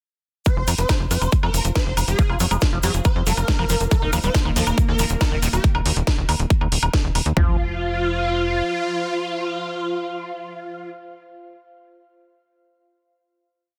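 A straight four-on-the-floor pulse of punchy, overdriven kick and floor tom, cracking snare, metallic hats, woodblock and a grainy egg shaker drives this alien psychedelic trance piece, where a rolling sixteenth-note sequencer bass joins a squelchy resonant acid line in the background, an aggressive swarming rave lead riff with chorus and delay, a breathy airy pad of shifting chords and a brief morphing wavetable pad holding a high note, the latter four pumping together until the groove gives way at 7.4 seconds to a final held chord, all under a dense, heavily limited master.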